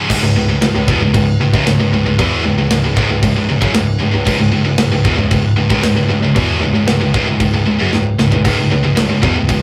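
A scooped, high-gain electric guitar leads this aggressive, dark heavy metal fragment, its distorted, picked riff double-tracked and sitting up front while it ranges from C#2 to E3. Beneath it, a single close-miked cello plays the bass part with an airy bow, light vibrato and an intense edge, staying between C#2 and F#2. A tight acoustic metal drum kit, mid-forward with a medium-tuned snare, firm kick and glittering cymbals, drives the music alongside crash, splash and toms. The piece moves at 115 BPM in a straight 4/4, resting on C# minor throughout a single section. A drum fill from 7.9 to 8.4 seconds stands out near the close of this short cut from a longer work, which carries the moderate booth ambience of a rough rehearsal-room recording.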